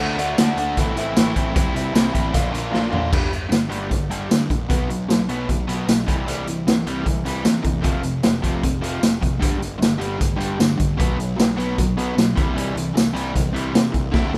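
Wistful and jangly, this indie rock piece, cut from a longer song, drives along at 153 BPM in a straight 4/4, with a dark, double-tracked overdriven electric guitar riff sitting up front over a fuzzy, warm picked bass that plays throughout. A raw garage drum kit of kick, snare, hi-hat, toms, crash and tambourine enters at 0.2 seconds with a boomy kick, gritty saturation, a rolled-off top and a pumping room sound, and it pushes a drum fill from 2.7 to 3.1 seconds into a new section built largely on power chords. The rough home-demo mix carries light reverb and small-room ambience.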